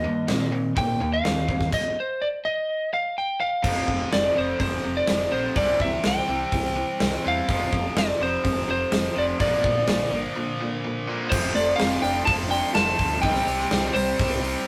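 Gritty and brooding, this classic rock excerpt drives along at 125 BPM in a straight 4/4, cut from a longer piece and captured as a rough rehearsal-room recording bathed in wet studio reverb. A lightly driven lead guitar carries the melody up front from the start, its tone slightly broken-up and compressed, sitting between C5 and A5. Beneath it, a distorted electric guitar and a bright overdriven electric guitar share the riff in the low and middle register, supported by a growling fingered bass with overdrive. A gated 80s drum kit joins at 0.3 s with a tight kick, medium-tuned snare, hi-hat and crash cymbals, sounding big and polished in its gated room. The band passes through a stop and a short break before a final passage at 11.3 s, where a dark, shimmering cello-range steel pan played with hard rubber sticks adds a second line in the background.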